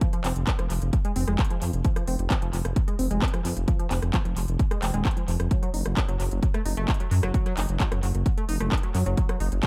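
A straight pulse at 131 BPM drives this intense stretch of peak-time techno in F phrygian, cut from a longer piece and tuned slightly low to A4 = 436 Hz. A heavy, overdriven electronic kick sits up front, joined by a layered techno kit of handclaps, smooth hi-hats and rim clicks, its hats and cymbals pumping against the kick and trailed by tape echo. From 0.2 seconds a dark, detuned saw bass rumbles between Eb1 and Gb2, its beating, saturated tone held close and breathing with sidechain pumping. Above it, a tight sequenced synth riff moves between F3 and Eb4, its sawtooth filter pluck evolving under chorus, pumping and tape echo. The whole stays in one section, wrapped in an echo-heavy digital ambience that keeps the mood driving and intense.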